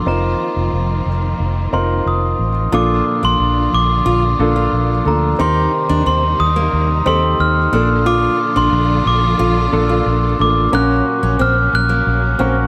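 A mellow, bell-like glockenspiel played with rubber mallets carries the melody from the first moment, sitting close and dry over an intimate grand piano with audible action noise and long sustain. A bowed string section holds smooth, vibrato-laden chords beneath them, and a round, punchy, foam-muted electric bass comes in just after. At 2.7 seconds a warm, fingerpicked steel-string acoustic guitar adds a riff, giving this hopeful, uplifting piano-driven pop passage, cut from a longer piece and set in a small room's ambience, a fuller texture.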